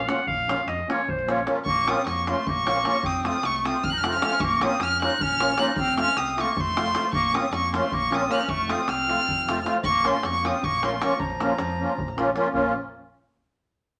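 A bright, vintage clarinet opens with a solo over a deep, dry davul, a round overdriven electric bass and a shimmering musette accordion in this virtuosic, bittersweet Balkan wedding-band fragment in 7/8 and Bb harmonic minor, which starts at 309 BPM in eighths and keeps speeding up. At 1.7 seconds a rich, nasal, slightly boxy bowed violin with vibrato takes the melody up front, the accordion's reedy accompaniment moves between Bbm and F, and a wet studio reverb surrounds the whole.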